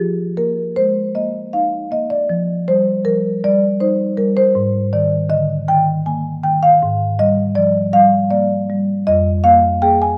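A rubato 6/8 pulse at 53 BPM in dotted quarters gives this reflective, hypnotic contemporary classical excerpt for solo marimba in F dorian its gently drifting flow. The marimba, played with soft mallets on rosewood bars, sounds woody, mellow and round, sitting up front as it spans F2 to Ab5 through harmonies moving from Fm7 to Ebadd9/F, Absus2, Gm7/Ab and finally Fmadd11 at 9.1 seconds. A moderate recital hall reverb and a dark production frame the instrument across its 10.2 seconds.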